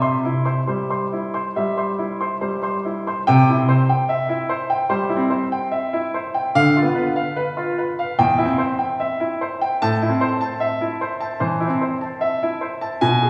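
A solo baby grand piano opens at 0.0 s with a clear, open tone and long sustain, placed up front in the sound. This is a serene, dance-like classical piece in a baroque-style suite manner, cut from a longer movement and played with a flexible rubato feel in four. The piano ranges from E2 up to C6. A short opening passage gives way to a longer second passage at 3.3 s, and the harmony gradually takes on a gentle minor tinge, arriving on A minor at 9.8 s. The instrument sits in a lush concert hall reverb with a lingering tail, giving the playing a spacious, church-like air.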